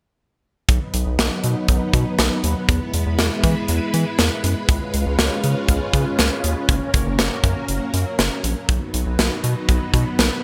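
At 0.7 seconds a string machine, drum kit and round analog bass come in together, opening a wistful, sunny synth-pop excerpt cut from a longer piece. The lush string machine holds sustained chords through an ensemble chorus, while the deep, dark bass carries the low end and the up-front, polished drums ring with gated reverb around a tight kick and medium-tuned snare. The harmony moves from B to E, C#7 and F# before returning to B, all in a bright 1980s-style digital production with a light small-room ambience.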